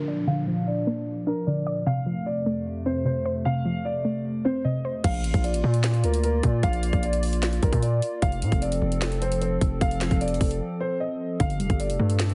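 A dark, boxy grand piano with tape echo carries a wistful, dreamy melody in Bb major over a hollow, flute-like pad, a soft round pluck and a brief electronic downlifter, then at 5.0 seconds a heavy distorted 808-style bass and an up-front trap kit of hard-clipped kick, sharp snare, metallic hats, claps and crash drop into a half-time 151 BPM groove, with a short break at 10.6 seconds before a Gmadd9 chord closes this heavily compressed, radio-like excerpt.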